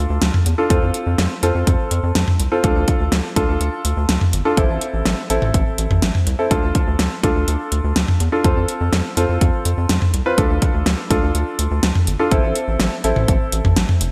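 Synth-pop with a cool, melancholic mood moves at a steady, straight pulse through a short section cut from a longer piece, circling through minor and major chords. A warm concert grand piano carries the accompaniment in the middle register, intimate and up front, with audible action noise and a slapback echo trailing its notes. Beneath it, a rubbery square bass holds the low end from the start, hollow and bouncy with a filter pluck, fast attack and a dark, sustained tone shaped by wave folding. The pop drum kit enters at 0.2 seconds with a punchy kick, fat snare, metallic hats and toms, its layered electronic sound overdriven and pushed to the front of the mix. A moderate, lush hall reverb spreads the whole arrangement into a big arena sound.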